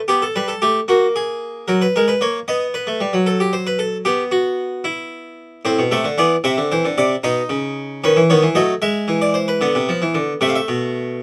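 Serious and contemplative, this baroque-style three-part fugue for solo harpsichord moves at 76 BPM in dotted quarters through a straight 12/8, cut from a longer piece. The Italian-style harpsichord sounds plucked and full, with two sets of strings and a mid-forward, up-front presence, spanning A2 to F5 as the harmony passes from a rootless Em through B7, Am and E7 before settling back on Am. Close, detailed microphones and little reverb leave the instrument dry and immediate from 0.1 to 11.2 seconds.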